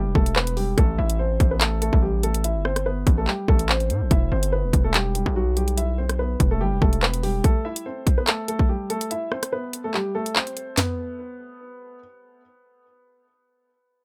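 A heavy, saturated 808-style bass with a fast attack opens this cold, dark half-time drill track at 144 BPM beneath a worn, mellow grand piano melody dulled by a low-pass filter and tape echo, while an electronic kit of hard-clipped kick, sharp snare, brilliant hats, rim clicks, handclaps and toms drives the Em and Am chords; the bass drops out at 7.4 s, a break arrives at 9.1 s, and the piano, with its audible action noise, carries on alone after the drums stop at 10.9 s in a dry, up-front mix.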